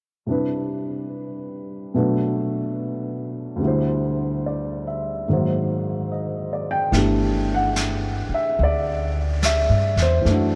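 A dark, mellow upright piano opens this romantic, intimate jazz ballad alone at 0.3 seconds, setting a slow swung 4/4 pulse at 72 BPM in G major. Its chords drift through Cmaj9, Bm7, D9sus4 and Ab9, played up front with a natural tone. At 6.9 seconds the harmony settles on Gsus2 as a pizzicato upright bass enters close and growly, its steel strings giving a woody edge in the low register. A vintage brush drum kit joins at the same moment, sitting quieter in the mix, with brushed snare and hi-hat carrying a rolled-off top. A vast cathedral reverb surrounds the trio with long, echoing tails, and this cut from a longer piece stops at 10.6 seconds.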